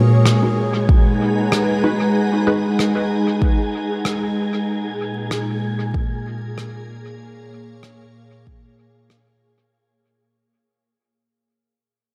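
A huge, moderate ambient reverb with a long 6.5-second tail and a bed of vinyl crackle give this ambient dub excerpt a deep, hazy atmosphere, and it fades out across its full length. At 95 BPM in 4/4 with a light sixteenth-note swing, it moves from G#m7 to A#m7 at 4.7 seconds. Up front, a soft, organ-like additive pad holds pure, calm, full-bodied chords with detuned unison voices, a moving notch, ensemble chorus and its own reverb. A muted, dark dub chord stab of detuned sawtooth and square waves with a sub octave sits in the background, evolving through a filter sweep with phaser, subtle chorus and dub echo, and it stops at 2.6 seconds. An airy, breathy, wind-like tuned noise layer enters at 0.2 seconds and drifts through its own reverb, while a brushed rim click in a studio room trails dub echo. An overdriven, layered electronic kick, re-recorded in a small room, lands up front with a deep, produced punch.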